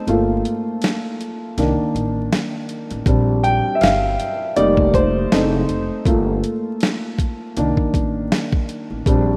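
Vinyl crackle and a small-room ambience give this rough home-demo recording a dusty, intimate feel, with a touch of reverb around it. It is a melancholic, nostalgic lo-fi hip hop groove in C dorian at 80 BPM in 4/4, swung on the sixteenths and tuned slightly flat to A4 = 437 Hz. An up-front upright piano with long sustain and a woody, natural tone provides the accompaniment and plays a solo throughout, moving from Gm9 and Cm9 through Bb6, F9sus4 and F#dim7 before returning to Gm9 and Cm9. A pizzicato upright bass with steel strings and an acoustic body sits low beneath it, while a gritty, pitched-down sampler-style drum kit, compressed and up front, adds a thumpy kick, a medium-tuned snare and hi-hat. The opening 3.1 seconds form a break, and the clip, cut from a longer piece, ends at 9.4 seconds.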